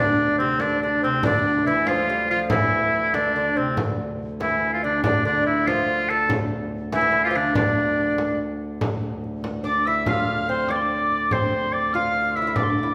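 Drenched in a wet recital-hall reverb, this mysterious, ancient-sounding medieval dance in D minor moves in a straight 6/8 at 95 BPM, with a clear, up-front oboe carrying the melody with light vibrato over a delicate, fingerpicked gut-string lute, an airy, hollow soprano recorder with tongued chiff, and a reedy, breathing harmonium drone on D, while a small, bright, saturated frame drum played with hard hands enters at 0.6 seconds and the music moves into a new section at 8.8 seconds before the excerpt breaks off.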